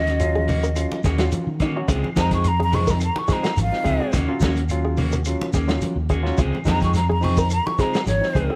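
With light reverb, this funky, hypnotic afrobeat excerpt at 107 BPM in Eb dorian features a breathy, vibrato-laced silver concert flute soloing up front over a round, dark fingered electric bass, a muffled lo-fi vintage drum kit, grainy shekere, faint woody claves, damped low-tuned congas in the background, slightly broken-up electric guitar stabs, a barky tine electric piano, and a plunky fingerpicked open-back banjo playing arpeggios from 0.4 seconds, above alternating Ebm7 and Dbmaj7 chords.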